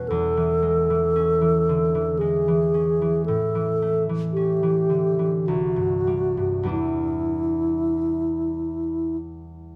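In a rubato 3/4 that drifts between 47 and 59 BPM, this mysterious, wistful impressionist classical duo excerpt sets a pure, close-miked alto flute melody, tongued and shaded with vibrato, over a mellow, ringing concert harp accompaniment picked with the fingers, both placed up front in a moderate recital hall reverb as the harmony moves from Amaj7/E through A7 and C5 to Em7, with the flute stopping at 9.2 s while the harp continues to 9.8 s.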